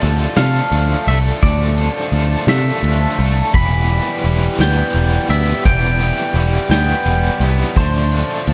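A 6/8 pulse from an airy, polished acoustic drum kit played with bundle sticks, with punchy kick, snare, ride and crash in a small room, anchors this moody, bittersweet indie rock fragment. An up-front picked electric bass sits loudest beneath two bright overdriven guitars playing riffs, one biting and treated with tremolo, the other lower and colored by analog chorus. A clean, compressed, twangy lead guitar carries the melody through plate reverb and tape echo as the harmony moves from Dmadd9 to Em and settles on Dm, within a dark production with light reverb.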